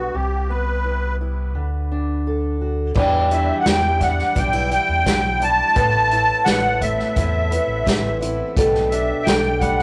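Indie folk with an anthemic, nostalgic mood and a building arrangement, this fragment of a longer piece opens with a reedy, shimmering musette accordion carrying the melody up front through tape echo, over a fingerpicked steel-string acoustic guitar with audible finger squeak and a dark, round fingered electric bass moving through chords such as Cmaj7 and D. Around 3.0 seconds a boxy, octave-doubled twelve-string acoustic guitar joins in the background, along with a soft-mallet drum kit with a punchy kick, dark cymbals and a roomy, distant character, as the harmony shifts to Em7, Amadd9 and Gadd9/B. The sound is that of a rough rehearsal-room recording with warm saturation and moderate studio reverb.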